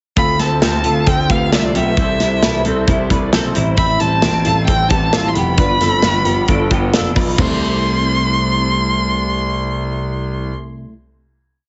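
An expressive bowed violin leads this bright, youthful piece of jangly indie pop, singing a motif-based melody with vibrato, portamento and a soft attack, touched by slapback echo. Beneath it, a twelve-string electric guitar rings out a twangy picked figure doubled in sixths with chorus and slapback echo, a full-bodied fingerpicked acoustic guitar fills in barre chord shapes, and a concert grand piano with audible action noise drives a deep eighth-note bass line. A tight acoustic drum kit keeps a brisk backbeat through the pre-chorus, a barely audible tambourine joins from 3.8 to 7.6 seconds, and the piece settles onto a final chord at 7.4 seconds, all in a heavily compressed, radio-like sound with light reverb.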